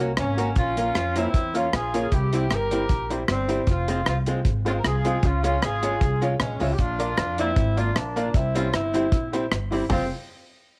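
Mischievous and energetic, this swung ska excerpt, cut from a longer piece, sets a mellow, punchy horn section on the melody over a dry, up-front reggae drum kit with a tight kick, hi-hat, rim click and toms, plus a woody pizzicato upright bass on steel strings. A clean, compressed hollow-body archtop guitar supplies accompaniment while a worn, slightly detuned upright piano adds dark stabs, its action noise audible up close. Light reverb and vinyl crackle give the minor-key progression an aged, lived-in sheen.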